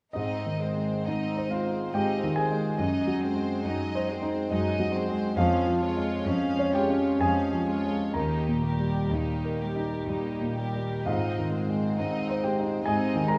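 A rubato 3/4 pulse shapes this passionate, lyrical classical passage: an up-front concert grand piano with clear, deep bass leads the melody, a close violin section with light vibrato also carries the melody, a second violin section adds a pure, floating line in the background, a sul tasto viola section plays a soft-attack accompaniment, and a cello section holds a bowed bass, all heard inside a moderate scoring-stage reverb.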